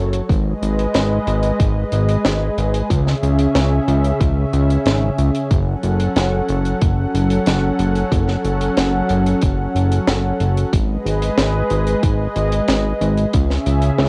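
A cassette-recorded home take with a short, moderate booth ambience frames this cinematic, driving synthwave excerpt in straight 4/4. A smooth, detuned sawtooth pad holds sustained chords up front, colored by chorus, 12-bit sampler grit, sidechain pumping, tape and plate reverb, while a fat, thick sawtooth bass with a plucky filtered attack anchors the low end from the start. An airy acoustic kit of hi-hat and high-tuned snare enters at 0.1 s and a punchy, layered electronic kick at 0.3 s, both with tape color, as the chords move from G#m through C#m to F#m and return to G#m and C#m.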